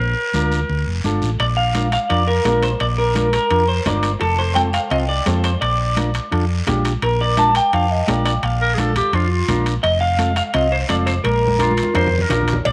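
A twangy, slightly broken-up electric guitar carries the melody from 1.4 seconds in this festive, danceable cumbia excerpt at 171 BPM in Bb major, set over a round, dark hollow-body bass and a clean, fingered electric guitar accompaniment. A breathy, subtone clarinet with light vibrato opens with a short jazz-style solo and returns at 8.6 seconds as a second line, while ringing congas sit in the background beside a raspy guiro and close, dry metal-shell timbales and cowbell. The percussion closes the excerpt with a drum fill from 11.2 seconds, and a moderate spring reverb in a small room gives the mix its sense of space.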